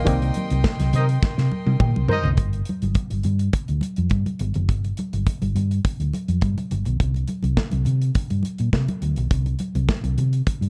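Glamorous and danceable, this disco excerpt moves at 104 BPM in a straight 4/4 feel, centred on G minor. It opens with a muted, stringy clav run through auto-wah, a clear, floating string section holding soft-attack chords over Cm7, and punchy horn stabs with vibrato and octave doubling that enter at 0.9 seconds. A drum fill and a clav fill close this opening, and the clav, strings and horns all drop out by 2.4 seconds. From there the groove rests on the parts that have been playing since the first moments: a round, amped hollow-body short-scale electric bass played fingered, sitting up front, together with a smooth acoustic drum kit with a tight kick, medium-tuned snare and rolled-off top, while thick-skinned congas played with hard hands sit close and dry in the background. The harmony shifts to G5 at 2.4 seconds and to C5 at 7.0 seconds. The production is dark and warm, with a small room ambience.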